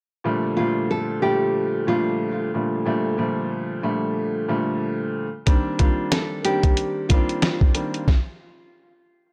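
Dark and moody, this boom-bap hip-hop excerpt at 92 BPM in G minor swings gently as a woody, up-front upright piano with cassette-tape coloring voices Gm9 and then Cm9 beneath a fingerpicked, full-bodied nylon-string guitar melody touched with tape echo, while a muffled, pitched-down sampler-style drum kit with a thumpy kick, fat snare, hi-hat and gritty 12-bit character enters at 5.5 seconds before everything falls into a stop at 8.1 seconds in a small room.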